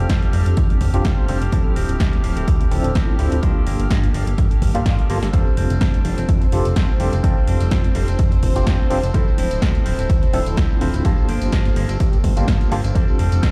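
Joyful and funky, this filtered disco house excerpt moves at 126 BPM in 4/4 with a light swing on the sixteenths, cycling through F6/9, Dm9 and Gm9 in F major. A fat, saturated analog bass with a detuned sawtooth edge anchors the low end, while a punchy, up-front electronic kick and a house kit with a punchy snare and tape-softened hats drive the groove from 0.1 seconds. A worn, slightly out-of-tune tine electric piano supplies chords through a combo amp with medium tremolo and phaser, and a twangy, picked guitar riff runs through an envelope filter. Behind them, a studio violin section holds bowed chords with light vibrato and a reedy, gut-string tone, and after a drum fill at 4.9 seconds a tambourine with shaker and group handclaps sits far back in the mix from 5.3 seconds. The melodic parts, bass and tambourine pass through a low-pass filter and pump with sidechain compression, and the whole track sounds as if played on a big sound system in a bare room.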